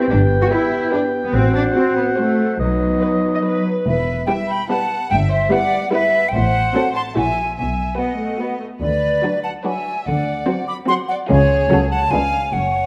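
This playful, whimsical film cue opens with oboe, clarinet and a mellow French horn section over bowed cellos and an up-front double bass section, all in a steady three-beat metre with a quirky, magical air. The clear, close-miked oboe and the soft-edged clarinet carry second lines while the horns hold sustained chords, and this woodwind-and-brass colour drops out by about 3.7 seconds. From 0.5 seconds the strings fill in: a clear violin section takes the smooth, vibrato-laden melody, a second violin section sings expressively in the background with portamento, and rich violas supply accompaniment above the distant cellos and focused basses. At 3.9 seconds a bright, airy silver flute steps up front with its own expressive second line, riding over the strings as the harmony moves through chromatic turns toward a tense C#7b9 near the close. A moderate scoring-stage reverb gives the orchestra a polished, cinematic space, and the passage ends mid-phrase, cut from a longer piece.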